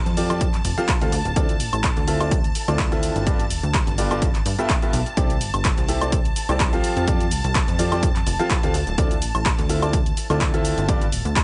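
A dry, close-sounding clip of euphoric, uplifting piano house at 126 BPM, its top end softly rolled off and its 16ths lightly swung, cut from a longer piece. A brilliant grand piano riff with delay rides over a funky, wave-folded analog bass with a fast filter pluck, while a shimmering, warbling vintage string machine holds sustained violin chords through ensemble chorus; piano, bass and strings all pump against the sidechain. A punchy electronic kick lands from 0.4 seconds alongside an analog drum machine of handclaps, hi-hat, shaker and woodblock, as the chords move through F69, Dm9, G9 and C69.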